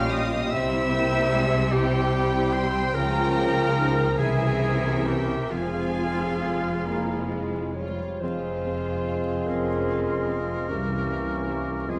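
A slow, rubato 6/8 pulse at around 43-52 dotted-quarter beats per minute carries this melancholic, elegiac classical passage in F minor, cut from a longer piece. A lush, distant violin section sings the melody high above the orchestra with smooth, even vibrato, while a second violin line, a clear solo oboe, a dark, soft-edged clarinet and a very quiet, airy flute group weave secondary lines around it. Beneath them, a dark viola section fills in the accompaniment, a mellow, roomy French horn section holds sustained chords, a dark trumpet section adds background stabs, and a very quiet concert harp rings out fingerpicked arpeggios across a broad span. The bass is anchored by a bowed, expressive cello section and a studio double bass section, and a mellow solo bassoon joins the accompaniment at 8.2 s as the passage moves into a new section. The harmony leans on tense diminished and C7b9 chords before settling on F minor at 5.5 s, and the whole ensemble sits in a wet scoring-stage reverb with a layer of vinyl crackle.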